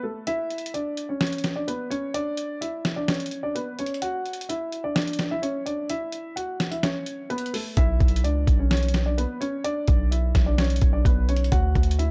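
Brooding and menacing, this dark trap-leaning hip hop excerpt in B minor moves at 128 BPM with a half-time feel, as a mellow, filtered baby grand piano carries the melody from the start over a gritty, compressed soul-sampler drum kit entering at 0.3 seconds, whose thumpy kick stays muted until 7.8 seconds, when a punchy, saturated 808-style bass hits hard up front beneath chords moving through Bmadd9, D and A in a dry, dusky mix.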